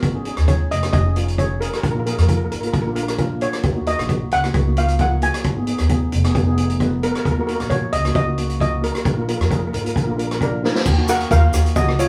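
Intense and tense, this calypso is cut from a longer piece and runs on a straight four-beat pulse. A double-seconds steel pan carries the melody with hard rubber sticks, its tone metallic yet smooth, while a second double-seconds pan, struck with medium rubber sticks, supplies boxy, shimmering accompaniment beneath it. Pizzicato upright bass with steel strings gives a woody low end, and a street-band drum kit sits up front with a boomy kick, medium-tuned snare, rim click, hi-hat and dark crash cymbal, its top rolled off. The harmony leans on suspended chords that settle into minor ones, and a drum fill at 10.6 seconds leads into a new section where a grainy, bright egg shaker joins quietly in the background at 10.9 seconds. The band plays live together in one room, wrapped in a wet studio reverb.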